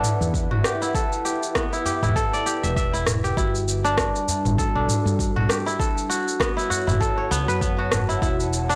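A swung, hypnotic organic downtempo groove built on an overdriven afro-pop kit of rim click, shaker and toms, a deep, distorted electronic kick and a round, dark fretless electric bass pumping under a warbling, detuned lo-fi pad with chorus, while a crisp, fingerpicked kora rings out arpeggios through digital delay up front, a small udu joins in the background from 1.9 to 7.0 s, and a soft, metallic bronze singing bowl hums from 3.4 s in this mystical, blown-out recording cut from a longer piece.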